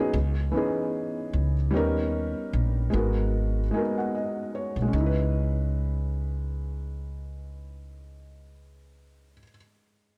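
Hip hop with a hazy, melancholic mood and a swung sixteenth-note feel, heard as an excerpt from a longer piece. A felt-muted upright piano carries the chords with a soft, boxy tone, cassette-tape coloring and audible action noise, while a pizzicato upright bass on gut strings sits up front with a woody thump. Light studio reverb and a dark production surround the two instruments, and the harmony moves from C#m7 through D#7b13 and G#m9 before returning to C#m7 at 4.9 seconds.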